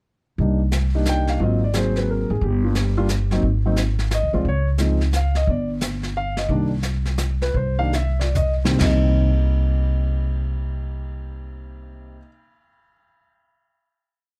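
A smoky, cool jazz piano trio in a swung 3/4 opens at 0.4 seconds with piano, upright bass and a vintage brush kit entering together. The mellow, smooth baby grand piano sits up front with long sustain, stating a bebop-style theme that returns and supporting it with syncopated comping in rootless voicings. The pizzicato upright bass is woody and thumpy on gut strings, playing a two-feel line close in the mix. Softer behind them, the brush kit sweeps the snare and adds a tight kick and dark cymbals in a small-room sound. The trio begins slowing down at 6.5 seconds, and a drum fill at 7.9 seconds leads into a final chord at 8.8 seconds. The close, detailed recording carries little reverb, giving the whole piece a vintage character.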